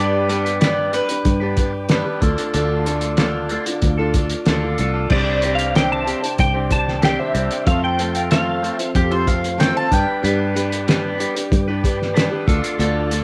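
Wistful and dusty, this short folk rock and heartland rock cut sets a dark picked steel-string acoustic guitar, a round fingered bass, a faint tonewheel organ through a slow rotary speaker, and a bright, scooped twangy electric guitar riff run through a phaser over an up-front, muffled, gritty cloth-damped drum kit with a fat snare, while a mellow double-strung mandolin adds a second line and a compressed clean electric guitar carries the melody from 5.1 to 8.9 seconds through ensemble chorus and tape echo, all in a lo-fi home cassette sound with light reverb.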